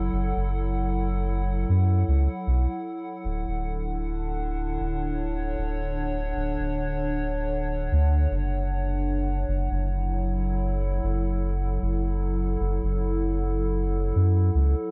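From the opening moment, a warbling, detuned pad and a deep, round sub bass sound together in this spacious, meditative ambient dub piece, cut from a longer work. The pad holds sustained chords with a slow attack and long release, its dark, nostalgic lo-fi tone colored by chorus and its own reverb. Beneath it, the soft sub bass sits up front with a quick attack and sustained, rounded notes, slightly louder than the pad. The harmony drifts from F#m7 to Dmaj7 at 3.2 seconds and back to F#m7 at 9.5 seconds, over a gently swung sixteenth-note feel in 4/4. The overall sound is dry, with the bass ending at 14.7 seconds just before the pad ends at 14.9 seconds.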